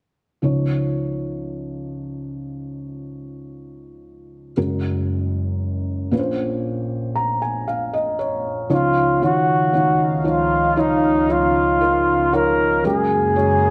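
A breathy flugelhorn carries the melody in this hopeful, emotional pop excerpt, entering at 8.7 seconds with a whispered, vintage tone, gentle vibrato and a soft attack, played up front in an intimate jazz style. Before that, a felt-muted upright piano plays alone from 0.4 seconds, its thick felt giving a dark, mellow sound with audible action noise, and it adds a fill from 6.6 seconds before the horn arrives. Alongside the flugelhorn, a chorused pulse-width pad fills in sustained chords, shimmering and retro with a slow attack and a sub-octave beneath it. The tempo is a slow 58 BPM in a straight 4/4, in D-flat major, moving through Dbadd9, Gbadd9 and Bbmadd9 before returning to Dbadd9 and then Gbadd9. The whole piece sits in a wet echo chamber reverb that lends it a soft, spacious glow.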